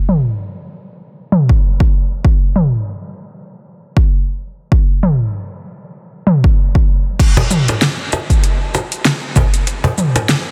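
A dense, heavily limited mix with light reverb carries this earthy, mystical downtempo fragment, with a swung sixteenth-note feel. Up front, a deep house drum kit with crash, metallic hats, shaker, toms and a fat snare plays from the start, overdriven and low-pass filtered in a small room, and a punchy, layered electronic kick joins at 1.5 s. As the second section gets under way, a woody, compressed cajon with faint snares arrives at 7.4 s.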